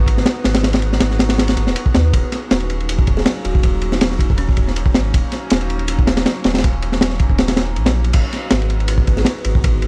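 Drum and bass with a jungle edge, this nostalgic, raw passage is cut from a longer piece and sits in a straight four-four drop throughout. A crunchy breakbeat kit sits up front, acoustic and small-roomed, with a punchy kick, a high-tuned snare, dark crash and ride cymbals, and a saturated, rolled-off top. Beneath it a soft dub sub bass runs the whole way, deep and round with a fast attack and a touch of tube saturation. A warbly, tape-like pad holds sustained chords moving between G#m7 and D#m7, detuned and mellow, its chorus, built-in reverb and vintage 12-bit sampler grit giving it a lo-fi, faded colour. A buzzing kalimba drifts in the background with woody, ringing thumb plucks through a dub echo, first around 3.2 seconds and again near 9.2 seconds, all set in a dry, gritty cassette-tape sound.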